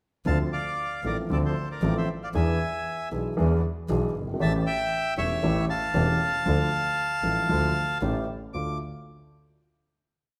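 A milonga rhythm from the piano and the bowed double bass carries this short, rubato tango, melancholic and tense. Up front, the reedy, bright bandoneon sings a motif-based melody in sentence phrases, partly doubled in thirds, beside a warm grand piano, while the single bass sounds close, biting and nasal, with light vibrato and an airy bow. The trio plays live in a wet stone room through Dm7, E7 and A7, arriving at a final Dm chord at 8.5 seconds.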